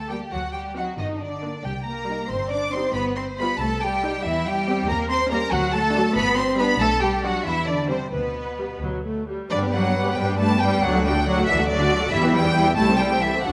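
A string orchestra sits in the moderate reverb of a scoring stage, giving this lively, graceful classical-period movement in 6/8 a sense of space, though it is cut from a longer piece. A close, focused violin section carries the melody up front with rich vibrato, while a second, more distant violin section adds a lush, expressive second line beneath it. A smooth, even viola section fills in the accompaniment from 0.1 s, and a warm cello section with a smooth top partners the double bass section, itself warm, close and expressive, on the bass. The bowed ensemble plays with a flexible rubato feel as the harmony moves from D7b9 through Gm and Cm before settling into G major at 4.2 s. At 9.5 s a new section begins, passing through Em and ending on Am7/C.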